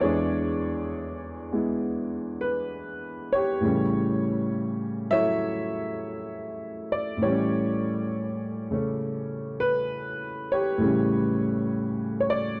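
Swung eighths in a 67 BPM 4/4 carry this playful, sophisticated solo jazz fragment, cut from a longer piece, where a smooth, vintage grand piano sits up front in a dry, close 1970s-style studio sound with small-room ambience, ranging from E2 to E5 as it moves from E7 to A7 at 3.6 seconds.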